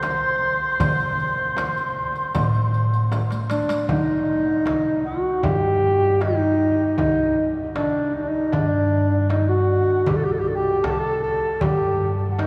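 Bathed in a cathedral-like reverb with a long, church-hall wash, this soulful, melancholic Arabic maqam ensemble fragment sets an up-front mellow clarinet, smooth-topped with subtone, scooped notes and light vibrato in a jazz-tinged solo, over a pure, chiffy clay alto ocarina second line, a woody, growly pizzicato upright bass, and a background bed of metal-shell darbuka, deep frame drum, and brightly jingling riq that plays until a drum fill ending at 3.9 s.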